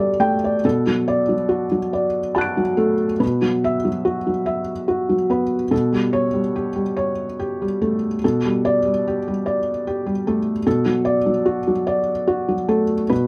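Neoclassical minimalist piano in B minor, this short excerpt is cut from a longer piece and carries an intimate, wistful mood. A solo felt-muted upright piano plays from 0.0 to 13.3 seconds, moving at a slow 48 BPM in 6/8 with a rubato feel, tuned slightly low at A4 = 438 Hz. Its tone is soft, muted and mellow, spanning from B2 up to D7, with audible action noise that makes the instrument feel natural and up front. Close, detailed microphones and a light reverb keep the sound near and personal. The harmony drifts over a B in the bass, moving from Gsus2/B through Bm7, Esus2/B and A7/B before returning to Gsus2/B and settling on Bm7 at 10.7 seconds.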